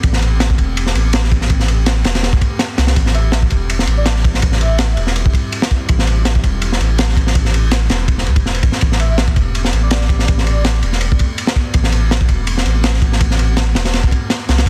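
A crunchy, gritty breakbeat kit of tight kick, medium-tuned snare and dark ride cymbal sits up front from the start, alongside a deep, thick saturated sub bass and a warbling, lo-fi pad in the background that holds detuned chords moving from Am9 to C and back. This atmospheric, raw drum and bass cut runs at 164 BPM in A dorian with a light 16th-note swing, its dense, heavily limited master set in a small room ambience. A soft, airy lead with vibrato, chorus and dub echo drifts in briefly at 3.1 seconds and again at 9.0 seconds, floating high behind the drums.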